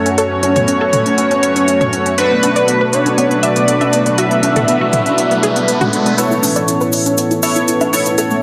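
A thick, bold unison lead carries the melody from the opening, its detuned sawtooth tone softened to a mellow edge and trailed by dub echo, over a bright, warbling pad that holds sustained chords beneath a filter sweep. This is euphoric, hopeful progressive house at 120 BPM in 4/4, cut from a longer piece and moving from F#m to Bm7 at 2.2 seconds. A glossy, retro polysynth sits up front with chorused stabs coloured by cassette tape and delay, while a punchy sawtooth pluck plays delayed arpeggios in the background. Smooth, layered electronic hi-hats run through a high-pass filter, and overdriven analog congas and toms sit further back with the sound of a large room. A riser enters at 4.4 seconds, and the lead drops out just before 6.2 seconds, when the chord turns to Aadd9 and a build-up begins, with filter sweeps on the pluck and polysynth and a grainy cabasa joining, all wrapped in a lush hall reverb.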